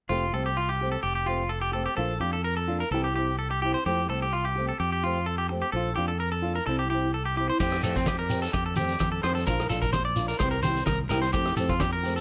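This sunny, danceable highlife guitar band groove at 128 BPM in F major opens with a twangy, slightly broken-up electric guitar playing up-front arpeggios with slapback echo, over fingerpicked flamenco guitar accompaniment and a round, dark fingered electric bass, cycling through Fadd9, Bb and C. At 7.6 seconds a vintage drum kit with a punchy kick, dark cymbals and a pumping small-room sound joins alongside thin-skinned, low-tuned congas in the background and a grainy, close shekere. This excerpt, cut from a longer piece, has a dry, band-limited sound.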